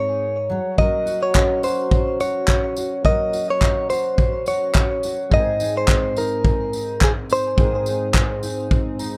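Acoustic pop with an easy-going, sunny swing: a bright, compressed clean electric guitar carries the melody up front through a digital delay over a full-bodied, double-tracked fingerpicked steel-string acoustic guitar, while at 0.8 seconds a vintage brush kit with a punchy kick, handclaps and tambourine joins alongside a very quiet, intimate grand piano whose action noise can be heard and which adds a short fill at 8.7 seconds, all in a dry, rough home-demo mix cut from a longer piece.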